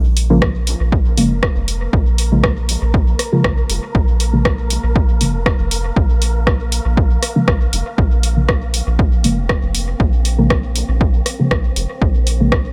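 Nocturnal and hazy, this short cut from a longer dub techno piece moves at 119 BPM in a straight 4/4, sitting on a single Bbm7 chord in Bb minor. A soft, round sub bass opens at 0.0 seconds with tube saturation and sidechain pumping. An analog drum machine follows with hi-hat and rim click, overdriven and soaked in dub echo. Deep, mellow chord stabs then carry the harmony with a full-bodied, nasal character, treated with chorus, phaser, dub echo and pumping, while a filter sweep runs across them for the whole passage. An overdriven, punchy electronic kick joins just after, layered and up front. From 0.9 seconds a breathy, wind-like tuned noise texture drifts in quietly in the background, slow to rise and long to fade, wrapped in its own reverb inside a digital ambience.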